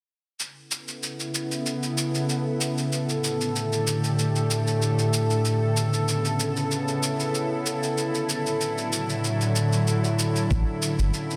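A lightly swung 95 BPM groove in 4/4 opens with a gritty, sampler-style cabasa at 0.4 seconds, soon joined at 1.0 seconds by a bright, string-like bowed drone with vibrato, ring-modulated edge, sidechain pumping and a filter sweep, holding sustained chords through Aadd9, Gsus2/A and Dadd9/A in A mixolydian, before a deep, round analog bass and a thumpy electronic kick in the background arrive together at 10.5 seconds, all set in a lush hall reverb for a peaceful, earthy organic downtempo excerpt with a dense, heavily limited master.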